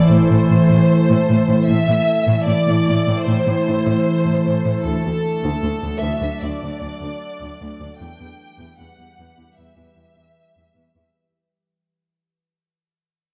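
Cinematic and brooding, this vast excerpt from a longer piece sets a lush, warm violin section carrying the melody over an up-front, detuned wavetable pad whose morphing chords warble through chorus, while a distant cello section holds the bass, a very quiet electronic impact sounds in the first 1.7 seconds, and the whole fades out within a dark scoring-stage reverb as the harmony moves from A minor to D and E minor.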